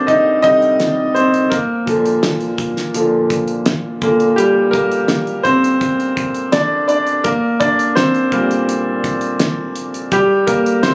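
Piano-driven pop with a bittersweet yet driving mood, moving at a steady, straight pace in four. A concert grand piano carries the accompaniment throughout, sitting up front with a clear, smooth tone, a vintage character and deep bass, ranging from the low register up into the middle of the keyboard. A damped 70s drum kit of hi-hat, kick drum and snare joins from 0.1 seconds, sounding dry and acoustic with a fat snare and a tight kick, placed lower in the mix beneath the piano. The harmony moves from Cm to Bb, then settles on Gm/Bb before landing on C5 at 10.1 seconds. Captured on a phone in the room, the sound carries light reverb, club ambience and compression, and this short passage is cut from a longer piece.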